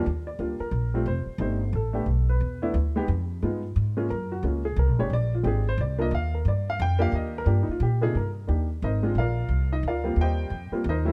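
Warm and swinging, this short cut from a longer jazz piano trio piece moves in a lilting three-beat metre with a moderate swing on the eighth notes. A dark baby grand piano carries the melody and solos throughout the 11.1 seconds, its mellow, intimate tone close up front, with audible action noise, a natural short sustain and a touch of plate reverb. Underneath, a pizzicato upright bass on steel strings sits equally near, woody and warm, and slightly louder than the piano. The harmony travels through rich colours such as Ebmaj9, a rootless G69 and Bb9 before settling toward Cm7 and a closing Eb6. A light room reverb ties the two instruments into a cosy, late-night space.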